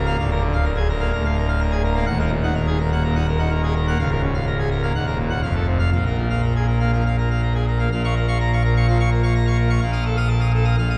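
A full pipe organ plays this stormy, dramatic classical toccata fragment at 126 BPM in 4/4, its majestic, brilliant mixtures and baroque voicing spanning Db1 to Eb6 with crisp chiff, sitting up front in a wet cathedral reverb whose top end stops at 10.8 kHz, as it moves through Ebm, Bbm and F harmonies before the opening section returns at 7.9 s and reaches F7/Bb at 9.8 s.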